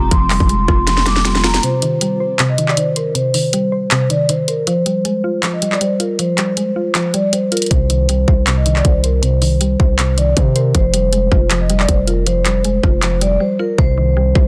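Half-time trap drums at 158 BPM, with a hard-clipped kick, sharp snare and bright hats, drive this dark, eerie hip hop fragment in C minor, where a vibraphone with soft mallets carries a ringing, metallic melody over a woody, round FM synth pluck with chorus, a blurred granular cloud pad sits in the background only at the opening and the final moment, and a punchy, heavy 808-style bass drops out for the break from 1.6 to 7.7 seconds before returning, while a long filter sweep runs underneath and a silent gap at 13.4 seconds gives way to a close with the hi-hats muted.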